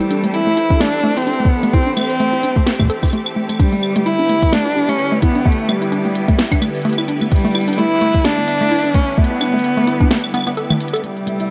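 Swung sixteenths at 129 BPM drive this glitchy, melancholic IDM piece, where an organic electronic kit of woody snare, crisp hats, claves and toms joins a soft, up-front kick entering at 0.7 s beneath a rich, expressive bowed cello melody with vibrato and portamento set in digital delay and shimmer reverb, while a silky vintage string machine holds phased, chorused chords over Am7 and Em7, a warbling lo-fi pluck runs dusty, detuned arpeggios through chorus, cassette tape and delay, a drum fill closes a brief break at 10.7 s, and a flickering, grainy texture surfaces at 11.2 s, all inside a huge ambient reverb.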